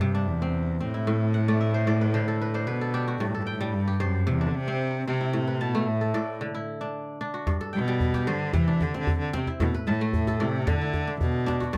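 Light reverb gives this joyful, warm fragment of West African string and xylophone music a gentle sense of space as it moves at 112 BPM in a straight 4/4. Up front, a single bowed cello carries the melody in a rich, smooth, even tone with vibrato, while a ringing, crisp fingerpicked kora spins arpeggios across a broad range and adds a fill at 1.3 seconds over chords that move through C, A5, Am7, D and G. At 7.5 seconds a close, tight djembe joins with cracking strokes and metal rattles.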